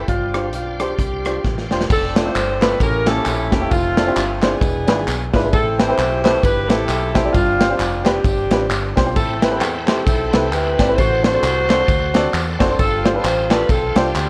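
A mellow, tightly voiced saxophone section carries the melody up front in this soulful, uplifting uptempo gospel excerpt at 132 BPM, swinging in 4/4 over a dark, intimate baby grand piano with audible action noise, a foam-muted fingered electric bass, and a punchy, pumping acoustic drum kit whose fill leads into the tambourine and group handclaps arriving from a distant large room at 1.9 seconds. A bright, shouting tonewheel organ with key click, chorus vibrato and slow rotary speaker holds sustained chords in the background, dropping out after the opening and returning at 9.2 seconds as the harmony moves through rich chords like Am9 and G7sus4. Light small-room reverb and the worn, warbling pitch drift of old cassette tape give the recording a vintage patina.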